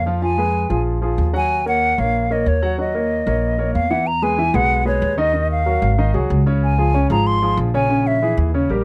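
A hollow, airy concert flute with vibrato and a crisp attack carries the melody up front in this fiery, sultry jazz fragment in Eb minor at 188 BPM, over woody pizzicato upright bass and polished grand piano chords with short sustain, all captured in a dry, close 1970s-style studio sound as the harmony moves from Ebm9 to Emaj9 at 4.1 seconds before the flute drops out at 8.4 seconds.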